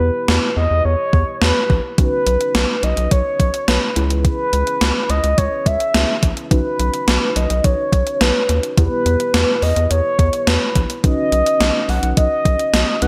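A mellow, horn-like synth lead opens this bright, upbeat synth-pop excerpt together with muted, felt-like synth keys and a round analog bass, all sounding from the first moment at a straight 106 BPM in B major. The lead carries the melody up front with a soft attack, sustained sawtooth-and-triangle tone, a filter swell, vibrato, chorus and delay. Beneath it, the keys sit quietly and intimately, their soft, decaying notes shaded with chorus and tremolo over a sub-octave layer. The bass is deep and dark, with a fast attack and sustained notes. At 0.3 s a gated 1980s digital drum machine joins up front with a thumpy kick, hi-hat and an overdriven snare in gated reverb, while the harmony moves through Em, Badd9 and C#m7 within a lush hall and bright digital production.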